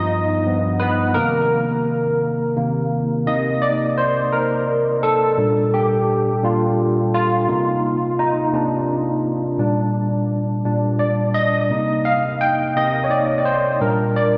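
In a slow, straight 6/8 at 57 BPM, this intimate, tender R&B fragment features a bright, barky tine electric piano playing alone and up front through a combo amp, lightly overdriven with ensemble chorus and delay, ranging from G2 to G5 over chords such as G7b13, Cm7, Cm9 and Bb6, all floating in a dreamy mix soaked in plate reverb.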